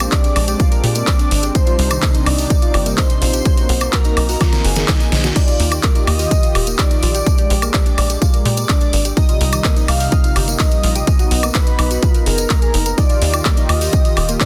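Progressive house at 126 BPM in Eb major, expansive and uplifting, where a punchy, up-front electronic kick and a tight, driving sawtooth sequencer bass sit beneath a pop drum kit with a deep, overdriven snare, handclaps, hi-hat, woodblock and crash, a jingly tambourine, a mellow detuned analog pad, soft round wave-folded pluck arpeggios with cassette-tape grit and tape echo, and two background leads, one velvety with vibrato carrying the melody and one airy and dreamy adding a second line, all circling Bb7, Cm7, Bmaj7 and Ebmaj7 in a dense, heavily limited mix with a drum fill at 4.4 seconds.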